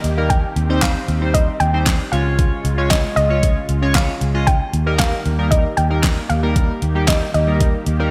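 A soft, round pluck melody opens this carefree, upbeat dance-pop excerpt over a smooth, warbling analog pad in the background, a dark, punchy muted electric bass and an up-front pop drum kit with a knocking kick, fat snare, hi-hat and handclaps, overdriven and bathed in gated reverb. At 0.2 s a glossy, retro polysynth adds bright, evolving chorused accompaniment, while the pad, bass and polysynth all pump against the beat, and the pluck carries chorus and digital delay. The bright 1980s-style digital production sits in a lush hall reverb as the harmony moves from Cm/Eb to Db and then Eb.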